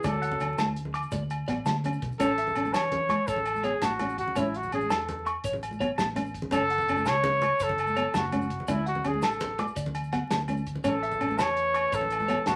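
Highlife guitar band music in a straight 12/8, sunny and danceable, cut from a longer piece and heard through a wet studio ambience with a layer of vinyl crackle. A mellow trumpet carries the melody up front, close-miked with light vibrato and scooped notes in a jazz style, while a growling, raspy trombone sounds only briefly in the background during the first 0.7 seconds. A bright, twangy clean electric guitar spins picked arpeggios high above, and a dark, fingerpicked nylon-string guitar with audible finger squeak fills in the accompaniment beneath it. The foam-muted fingered electric bass is round and punchy, and a warm soul drum kit with a tight kick and rolled-off top drives the groove, joined by ringing agogo bells, damped, thin-skinned congas and grainy maracas tucked into the background. A drum fill at 1.7 seconds leads into the main section, where the chords move from A through F#m to D5, and a very quiet French horn section adds smooth sustained chords from 10.8 seconds to the end.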